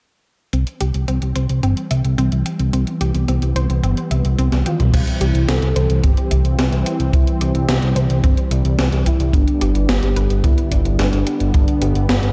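The fat analog bass sits up front, a thick sawtooth-and-square tone with tube saturation and sidechain pumping, holding low from 0.5 seconds in this dreamy, nostalgic synthwave excerpt at 109 BPM in C major. Around it, a smooth, detuned pad sustains chords through chorus and the same pumping, while a lush, punchy unison pluck spins delayed arpeggios, both opening under filter sweeps. A gated 80s digital drum machine, re-recorded in a large room, brings crash, hi-hat, toms and a gated-reverb snare, with a drum fill at 4.5 seconds leading into the second section. From 4.7 seconds a velvety lead carries the melody with chorus, delay and vibrato, and a boomy acoustic kick from a small room joins at 4.9 seconds. The harmony moves from C to G, and the production is dark with light reverb.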